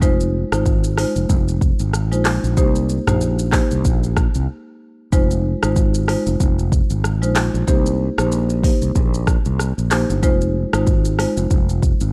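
The recording is dry, with a dark production. This afrobeats piece in F minor moves at 94 BPM in 4/4, with a 16th-note swing that gives it a hypnotic, sultry feel. An electronic afro-pop drum kit sits up front, with a deep kick, metallic hi-hats, handclaps, rim clicks, shaker and toms. A fretless electric bass, bright and growly with a direct, amped tone, also sits forward in the low register, while a woody rosewood marimba played with medium mallets supplies the accompaniment. The harmony alternates between Fm7 and Cm7, with a short break from 4.5 to 5.1 seconds. The marimba drops out at 11.4 seconds, and the bass and drums carry on to the end of this fragment of a longer piece at 12.1 seconds.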